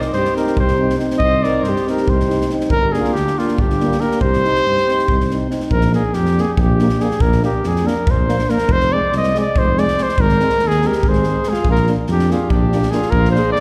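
Balkan brass band folk in a restless, bittersweet 7/8 at 282 BPM in eighths, speeding up throughout this short cut from a longer piece, with an up-front mellow trumpet carrying the melody with light vibrato and a smooth top, a clear alto saxophone adding a second line until 5.5 seconds before returning at 10.8 seconds, a distant vibrato euphonium and a warm, vintage euphonium accompanying in the background, a dark, close-miked tuba holding the bass, and an airy, polished acoustic kit with punchy kick and medium-tuned snare, all heard from further back in a reverberant concert hall as the harmony moves from C minor toward B-flat.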